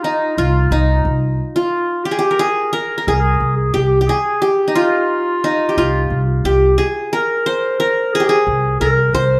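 A bright, plectrum-plucked qanun carries the melody up front in this short cut from a longer Turkish makam ensemble piece in C makam ussak, moving at a straight 89 BPM in 4/4 with a longing, melancholic mood. A mellow, distant clarinet in classical style plays a second line in the same register. From 0.4 seconds a woody, dark pizzicato upright bass plays a low C, and the whole is set in a moderate recital hall reverb.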